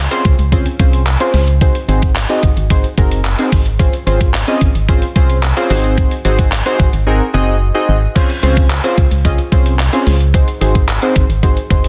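Upbeat and summery, this dance-pop clip rides on a hollow, organ-like FM bass with a dark, percussive bite, while round, chorused analog keys in pulse and sawtooth tones shift through a filter sweep, both with sidechain pumping. A gated 80s digital drum machine sits up front with a thumpy kick, hi-hat, handclaps and crash cymbal, its big room reverb cut short, and it drops out from 7.1 to 8.2 seconds before the chords cycle again. The mix is dense and heavily limited, with light digital ambience around the parts.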